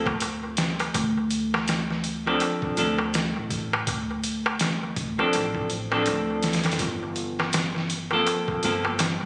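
Swung 16ths at 82 BPM drive this dark, hypnotic trip hop excerpt, where a gritty, pitched-down sampler-style drum kit with a thumpy kick and medium-tuned snare sits up front beside a crisp, soft-handed metal-shell darbuka, a woody pizzicato upright bass on gut strings anchors the low end, and a clean, hollow-bodied semi-hollow electric guitar, treated with tremolo, tape echo and a filter sweep, picks through Dm7 before moving to Gm11 at 6.8 seconds, the whole set in a small, lightly reverberant room.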